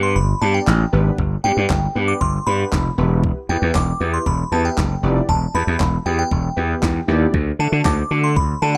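Dance-pop at 117 BPM in E minor, energetic and driving, where a gritty, growly slap bass with overdrive and sidechain pumping sits up front beside a crystalline FM synth bell melody with chorus and a funky, detuned sawtooth polysynth comp that warbles and pumps, while a thumpy 12-bit drum machine of kick, snare and handclaps enters at 0.7 seconds, all over a G to Em to D progression in a rough home demo mix with digital ambience, cut from a longer piece.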